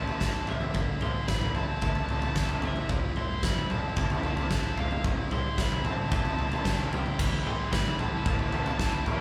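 A huge, up-front arena drum kit with a fat snare, punchy kick and bright cymbals drives this brooding, melancholic post-rock build-up, cut from a longer piece, as a bluesy distorted lead guitar carries the melody over a tight picked guitar riff, very quiet twangy clean arpeggios and a growly fuzz bass, with a faint overdriven guitar riff joining at 7.2 seconds, all of the parts heard playing live together in one room with light reverb.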